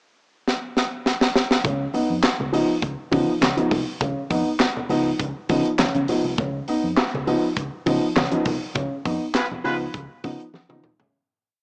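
Funky and playful, this short funk piece opens with a drum fill from a crisp, punchy fusion kit with a high-tuned snare, handclaps and toms, before a dark upright piano sets up a woody, percussive two-handed groove on a Db9 chord at 1.7 seconds. Underneath, a vintage foam-muted fingered bass plays a round, syncopated riff anchored on the downbeat with ghost notes and chromatic approach notes, while soft-handed congas add a thick-skinned syncopated groove in the background. A tight, clear horn section with vibrato lands a brief punch at 9.3 seconds during a band accent and fade-out, all carrying the small-speaker character of a home cassette recording with light reverb.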